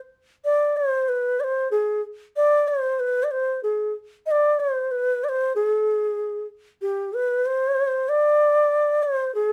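A light reverb surrounds this brief passage, cut from a longer piece, and gives it a gentle sense of space. It is Indian classical music in a serene, meditative mood, set in a straight four-beat metre. A single bansuri plays solo, entering at 0.4 seconds and ranging from G4 to Eb5 until it stops at 9.5 seconds. Placed up front, its airy, mellow bamboo tone carries tongued note attacks and an expressive vibrato. At 5.5 seconds the music moves into a new section, keeping its calm, contemplative character.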